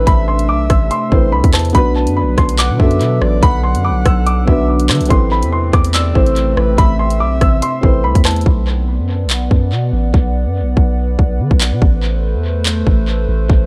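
A hard-clipped kick, handclaps, rim clicks and warm hi-hats drive this menacing, dark half-time drill excerpt from up front, with delay on the kit, while a deep, sine-like 808 bass with a fast attack and long decay rumbles beneath. A shadowy baby grand carries the melody high above a felt-muted upright with audible action noise, and a breathy flute-like synth lead with chorus, tremolo and vibrato adds a second line; all three carry analog delay and drop out by 8.5 seconds. From that point the hi-hats fall silent, leaving a hollow, airy pad with chorus sustaining chords over the bass and remaining drums until 13.7 seconds in an echo-heavy digital ambience.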